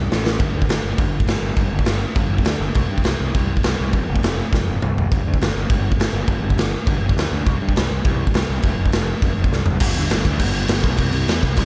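Dry and close, this rebellious, energetic punk rock fragment charges along at 204 BPM in a straight 4/4, with a growly, fuzz-laden picked electric bass running from F1 to G2 beneath an up-front, gritty garage drum kit of punchy kick, medium-tuned snare, toms and crash cymbal that pumps in a bright stone room, its fills striking at the very start, at 4.5 seconds and at 9.5 seconds, the last just before a new section takes over at 9.8 seconds.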